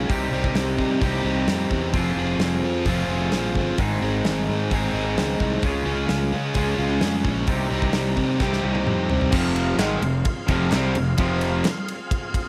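A straight 4/4 pulse at 130 BPM drives this gritty, swaggering classic rock excerpt in F minor, where a gated 80s drum kit with a tight kick, bright cymbals and a big, polished room sound underpins two riffing guitars, one crunchy and up front, the other sludgy and dark, over a growly, punchy fuzz fingered electric bass. A drum fill at 8.4 seconds leads into a new passage at 9.3 seconds, where a thick overdriven tonewheel organ with slow rotary speaker, chorus vibrato and key click holds sustained chords in the background. A double-tracked overdriven electric guitar adds another riff there, and very quiet, crisp group handclaps join at 9.8 seconds, all set in light studio reverb.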